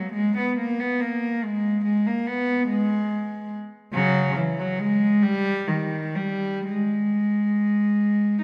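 In a free, rubato 6/8 that drifts between 32 and 49 BPM in dotted quarters, this brief 8.4-second fragment of a classical piece for unaccompanied cello in G# minor unfolds a mournful, yearning line, the lone bowed cello sitting up front with a soft attack and a pure, floating sul tasto tone spanning C#3 to B3, its smooth top gently carried by a wet concert hall reverb.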